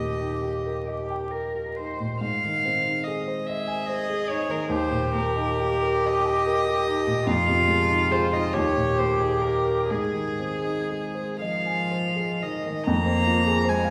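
In a rubato 6/8 at 39-52 BPM counted in dotted quarters, this tender, warm, slow romantic movement for piano trio in Ab major sets a rich, pure, floating violin melody, played sul tasto with a soft attack, above an intimate, close cello second line with light vibrato and an airy bow, over a dark, mellow baby grand piano accompaniment with long sustain, heard in a wet recital-hall reverb with vinyl crackle, before turning to an F minor chord at 12.9 s as this excerpt, cut from a longer piece, closes.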